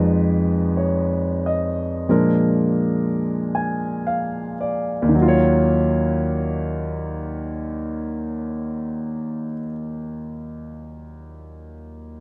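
Wistful and melancholic, this slow swung jazz excerpt features a clear concert grand piano with deep bass and long sustain, sitting up front in a moderate club reverb within a dark, warm production, easing to a slower pace over its first 5.1 seconds as the harmony moves through Fm7b5 and Bb7 before settling on Ebm9.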